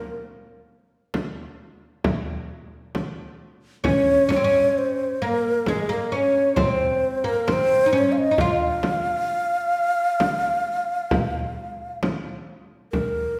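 This melancholic, hypnotic Arabic maqam ensemble piece in 10/8 is cut from a longer work, with a breathy, mellow low ney carrying the melody up front, its crisp attack and expressive vibrato captured close. A woody, fretless oud with double strings plays a deep second line beneath it until 12.0 seconds, while a large frame drum enters at 1.1 seconds to provide the percussion. The ensemble sits in a wet scoring-stage reverb and is heard from further back in the room, giving the short passage a spacious setting.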